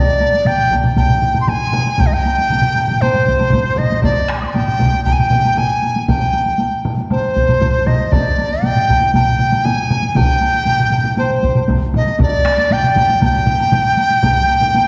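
Powerful and driving, this short excerpt of Japanese traditional taiko drum ensemble music moves at 118 BPM in a straight 4/4 in G miyako bushi, with an up-front large dizi singing an airy, buzzing bamboo melody with vibrato and a crisp attack from C5 to Eb6 over four layers of acoustic taiko struck with heavy and hard sticks, some set back in the background of a live room, and a very quiet, woody, vintage-toned woodblock, all heard from further back in a wet scoring stage reverb.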